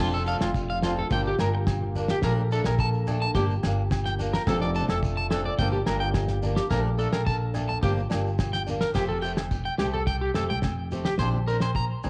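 Joyful and danceable, this highlife guitar band groove in F major moves at 107 BPM, with a twangy, slightly broken-up electric guitar playing arpeggios up front through tape echo, over a woody, growly pizzicato upright bass and a bright, boxy acoustic guitar picking swing-style accompaniment with audible finger squeak. A soft-attack French horn section holds clear classical-style chords in the background until 8.9 s, while a dry, cloth-damped drum kit with a fat snare, tight kick and dark cymbals drives the beat alongside ringing agogo bells, low-tuned congas and a grainy, distant shekere. The cassette home recording carries a faint mains hum and light studio reverb, and this cut from a longer piece moves from a cycle of sixth and seventh chords into a more open passage at 9.0 s.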